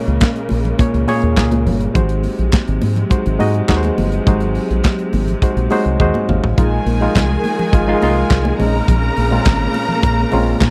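A straight 4/4 disco groove at 104 BPM in Bb minor drives this glamorous, short cut from a longer piece, with an up-front drum kit of punchy kick, medium-tuned snare, hi-hat, toms and handclaps, a round, dark fingered electric bass, and faint, high-tuned congas underneath. A barky, reedy electric piano with light overdrive carries the accompaniment over lush, smooth string chords, moving from Bbm7 to Ab7 until a piano fill and drum fill lead into a new section at 6.6 seconds, where a clear, focused second string line joins over Fm7/Bb and Bbm11. The sound is dry and close in a 1970s studio style, with a faint mains hum.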